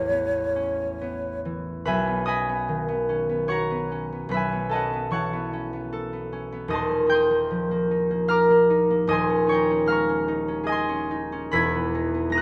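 Dreamy and pastoral, this impressionist classical duo in B major drifts at 74 BPM in a rubato 3/4, as an airy, hollow concert flute with vibrato and a soft attack sings a brief melody only until 1.4 s while a bright, ringing, fingerpicked concert harp carries the accompaniment through 12.4 s across a span from D#1 to B6, moving through lush add9 colours toward a closing Emaj7#11 inside a wet recital-hall reverb.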